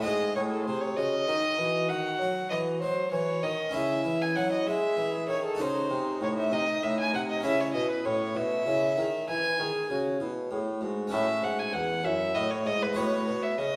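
Serene and radiant, this baroque-style sonata movement in C# minor moves at a gentle 65 BPM in 12/8, with a pure, softly attacked tenor recorder carrying the melody over a reedy, gut-strung violin second line set up front, a close, dry, plucked harpsichord with two sets of strings filling in the accompaniment, and a distant, roomy bassoon anchoring the bass, all within the lush reverb of a recital hall as harmonies shift between G#7 and C#m before moving through F#m7 to B7/A.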